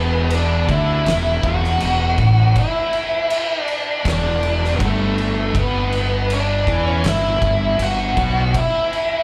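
A straight 4/4 pulse at 80 BPM drives this sludgy, heavy stoner and doom metal excerpt, heard as a live gig through a club PA with small-room reverb, with an up-front octave-fuzz lead guitar carrying a dark, distorted melody with slapback echo over two very quiet picked fuzz guitars, one warm and one dark, riffing on E5 before shifting to G5 at 5.6 seconds. A growly, overdriven fingered bass with tube saturation anchors the low end, while an oversized low-tuned drum kit enters at 0.3 seconds with a punchy kick, fat snare and dark crash cymbals, its gritty, saturated sound pumping in a bright stone room. The riff and bass stop at 8.5 seconds, while the drums continue until 9.1 seconds and the lead guitar until 9.2 seconds.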